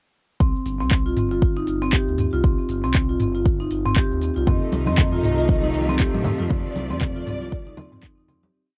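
A four-on-the-floor kick drives this short afro house piece, with a programmed backbeat of clap, crisp hats, shaker and low tom sitting on a swung sixteenth-note feel. The mood is earthy and driving. It is built as a drop from 0.4 s, where a repeating 16-step marimba sequence in medium mallets sits up front, coloured by tape echo and a pumping sidechain. Beneath it, a smooth, gliding synth bass plays a syncopated riff with portamento, vibrato and a moving notch, its detuned sawtooth-and-triangle tone rounded and mellow. At 4.5 s, as the harmony moves from C minor to F7, a lush, woody string section enters with bowed sustained chords, and dry, ringing congas interlock in the background. The deep kick and the strings carry a cassette-tape grit, the room has a light reverb and a homemade feel, and the piece fades out from 5.8 s.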